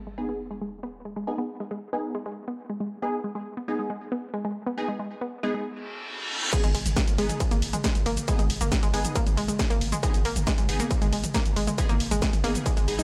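A distorted electronic kick drum, up front and re-recorded in a large room, dominates this driving peak-time techno passage in G# minor at 137 BPM, arriving at 6.5 seconds to launch the drop. Before that, a punchy, detuned sawtooth unison pluck riff and an aggressive, thick rave stab carry the opening over a G# minor chord, with filter sweeps on the synths and drums building tension. The pluck is colored by tube saturation, dub echo and sidechain pumping, while the stab adds chorus, built-in reverb, tape echo and its own pumping. An up-front sub drop opens the passage and a reverse cymbal leads into the drop, where a layered techno kit enters with a cracking snare, hats, shaker, toms, crash and ride, all low-pass filtered. A round sine sub bass sits in the background on G#1 with overdrive and pumping, and a light digital ambience frames this industrial, relentless section cut from a longer piece.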